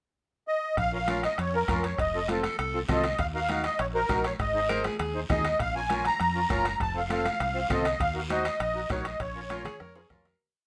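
A straight, danceable cumbia groove is set by a soft-beater bombo with rim, a raspy guiro, bright, high-tuned congas in the background, very quiet ringing timbales, and a dark, round, punchy fingered electric bass playing a cumbia figure. Up front, a shimmering, smooth musette accordion sings motif-based song phrases over a second accordion's reedy rhythmic triad chords. A clear, close-miked tenor saxophone with vibrato answers in the melody's rests from 2.3 s and returns at 9.5 s, as this passionate piece fades out from 8.5 s under moderate studio reverb and closes with a drum fill.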